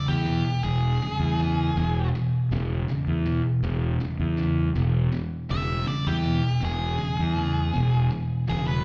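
This short clip sounds like a live gig heard through the venue's PA, with club reverb hanging around the band. It is a raunchy, swaggering rock passage in E major at 80 BPM, with a straight 4/4 feel that stays on an E chord throughout. A double-tracked, compressed fuzz guitar picks a low riff between E2 and C#3, its distorted tone thick and warm. A fingered electric bass enters at 0.1 s, overdriven and fuzzed, running from E1 to E2 with a punchy, direct-and-amped sound placed up front. Above them, a dark octave-fuzz lead guitar carries the melody between G4 and E5, picked and distorted, sitting further back in the mix than the riff and bass. Cut from a longer piece, the whole passage lasts about 8.8 seconds.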